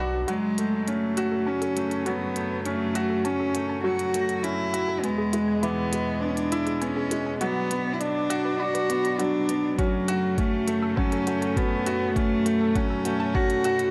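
A moderate concert-hall reverb surrounds this hypnotic, melancholic piano-and-strings electronica, cut from a longer piece that builds steadily over chords of F#m, E and Bm. A bright, woody upright piano riff sits up front beside a dark, expressive solo cello melody with vibrato and portamento, while a string quartet holds floating, soft-attack sul tasto chords with sidechain pumping and a very quiet, chorused analog pluck traces arpeggios. Clicky, overdriven electronic hi-hats, re-recorded in a large room and low-pass filtered, enter at 0.3 seconds, and a muffled, thumpy, pitched-down kick drum joins at 9.8 seconds.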